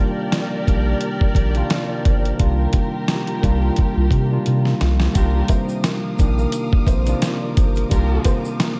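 A swung, head-nodding boom-bap groove in four drives this short cut from a longer hip-hop piece, its mood tough and gritty. The sampler-style drum kit sits up front, compressed and dusty, with a thumpy kick, a medium-tuned snare and hi-hat, and a drum fill from 4.5 seconds leads into the second section at 5.2 seconds. A soft, round dub sub bass carries the low end beneath a clean tine electric piano, whose cassette-tape colouring and filtering give it a small, built-in-speaker feel over a Cm11 harmony. Bowed string stabs, intimate and played sul tasto with vibrato, cut in from the start, and a distant, expressive string section adds sustained chords from 5.1 seconds. Around the same point a grainy, bright tube shaker enters in the background, and a dark, woody upright piano takes the melody from 5.5 seconds, shimmering with analog chorus and a diffuse ambient delay. The whole mix is dreamy and soaked in lush hall reverb.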